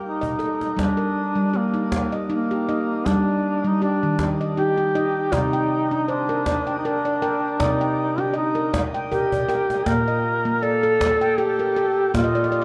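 A lilting 3/4 pulse at 79 BPM with a gentle swing on the sixteenths sets this hypnotic, meditative world piece in G minor, cut from a longer work. A woody, distant cajon with faint snares sits low in the mix, opening with a short fill that leads into the groove at 0.8 seconds and adding another fill around 9.1 seconds. Up front, the duduk carries the folk-style melody between Bb3 and Bb4 with vibrato and scooped notes, its vintage voice wrapped in shimmer reverb and a diffuse ambient delay. Close beside it, the handpan plays ringing, mellow arpeggios under soft fingertips, ranging from Bb2 to G5 with its own shimmer reverb, and closes with a brief fill at 12.2 seconds. The harmony moves from Gm to Cm and then Bb, all set in a wet recital-hall reverb over a small room ambience for a dark, warm production.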